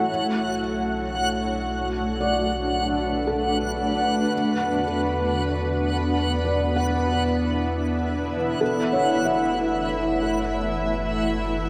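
A blurred, evolving granular cloud pad sits up front in this serene, melancholic ambient excerpt at 56 BPM, holding sustained chords through Bm7, E5 and F#m7 under shimmer reverb, while a felt-muted upright piano plays dark, intimate arpeggios in the background with audible action noise, delay and shimmer, a reversed, dreamy backwards texture hangs bright on F#5, and a round, deep sine sub bass fades in across the full 11.7 seconds, the whole piece set inside a huge, wet reverberant space.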